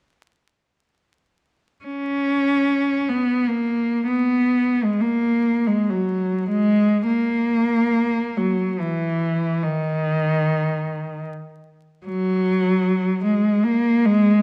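Unfolding in a free, rubato 3/4, this serene and nostalgic fragment of a longer classical piece gives a single bowed cello the stage from 1.8 s, its focused, vibrato-rich tone with a smooth top sitting up front in the low-to-middle register, shifting into a second section at 7.1 s before ending at 14.4 s, all wrapped in a wet recital-hall reverb with a bed of vinyl crackle.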